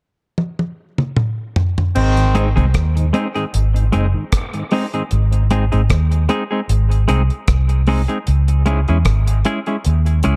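A dark, warm dub reggae excerpt with a heavy, spacious feel opens on a dry, tight drum fill before a round, foam-muted electric bass takes the front at 2.0 seconds, joined by a brief clear horn phrase trailing dub echo, a mellow tonewheel organ with slow rotary swirl sitting in the background, and a clean, compressed semi-hollow guitar echoing through the changes from G# to C#m.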